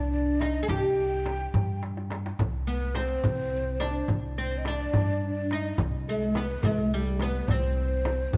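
A bright, woody fretless oud with plectrum-plucked double strings and a slapback echo leads this passionate Persian modal ensemble fragment in 6/8, sitting up front beside a thumpy pizzicato upright bass, while a breathy, distant ney weaves a mellow, unsteady second line with vibrato, and a small hard-handed frame drum and a tight, vintage-sounding tombak enter in the background at 0.4 seconds, with a drum fill at 1.8 seconds, the ensemble caught by close, detailed microphones in light reverb.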